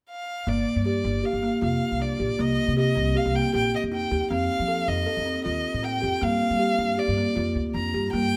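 A rich, focused bowed violin with vibrato opens the melody up front at 0.1 s, and at 0.5 s a buzzing, hollow-toned kalimba with thumbnail-plucked arpeggios and a woody pizzicato upright bass join, driving this hypnotic, urgent contemporary chamber piece in 5/4 at 156 BPM through a G minor progression of Gm7, Cm7, F7 and back to Gm7, all captured by close, detailed microphones in a moderate recital hall reverb in a passage cut from a longer work.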